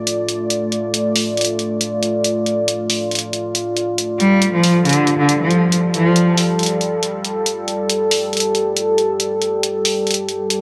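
Cavernous and brooding, this short cut of deep dubstep moves at 138 BPM in a half-time 4/4 feel with a light swing on the sixteenths, tuned slightly below standard pitch. A deep, moody ambient pad holds sustained chords from the opening through to the end, its detuned sawtooth layers and sub octave softened by chorus, a slow attack and a long release, shifting from D minor to an F chord with an added ninth at 4.0 seconds. An electronic hi-hat enters almost at once and runs throughout, its layered, tape-warm sound sitting up front with a small-room character. At 4.2 seconds a single bowed cello joins with a rich, focused melody in its low register, its vibrato and smooth top trailed by dub echo until it drops out at 6.4 seconds, standing louder than the other parts. The whole piece sits in a moderate echo chamber yet keeps a dry, gritty cassette grain, and it is cut from a longer piece.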